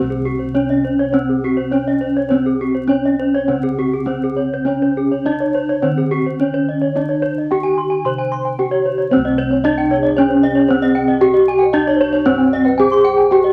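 Vinyl crackle and a moderate studio room frame this brilliant, ceremonial gamelan passage in C pelog, cut from a longer piece and moving in a straight 4/4 at 102 to 114 BPM. Up front, a ringing bronze metallophone struck with a wooden mallet carries the melody with shimmering beats from its paired tuning, while two horn-mallet metallophones spin arpeggios above it, one dark and smooth, the other bright. Round, airy bossed gongs anchor the bass, and at 10.0 s a breathy, hollow bass bansuri slips in behind as a soft second line with vibrato.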